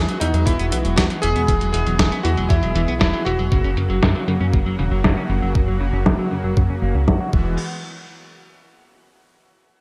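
A bright, 1980s-style digital production with light reverb opens this romantic, uplifting synthwave fragment in straight four, cut from a longer piece. A clear, vintage electric grand piano with a clangy low end and long sustain carries the melody for the first 3.7 seconds, dressed in lush chorus, delay and shimmer reverb. Beneath it, a soft, detuned supersaw holds smooth sustained chords that pump with the sidechain, while a glossy, mellow chorused synth bass sits up front under a filter sweep. A twangy electric guitar at the edge of break-up picks low-passed arpeggios through delay and shimmer reverb, and it also carries a filter sweep. The clean 12-bit drum machine brings a tape-colored, medium-tuned snare, hi-hat and crash cymbal with gated reverb and a filter sweep, joined at 0.5 seconds by a thumpy electronic kick recorded in a large room, all over a simple Eadd9 to F# and back progression.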